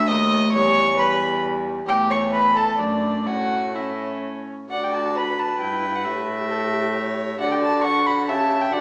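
A quick classical-period movement for string quartet in D major, spirited and graceful, moving at 133 BPM in a rubato 3/4. All four players have a period-style gut-string tone: a rich first violin carries the melody up front, the second violin's airy, nasal line sits close beside it, the viola's reedy accompaniment lies beneath, and a distant cello holds the bass. A recital-hall reverb with an RT60 of 1.4 s surrounds the small-speaker sound of this cut from a longer piece, whose harmony moves through Em and A before settling on D at 4.7 s.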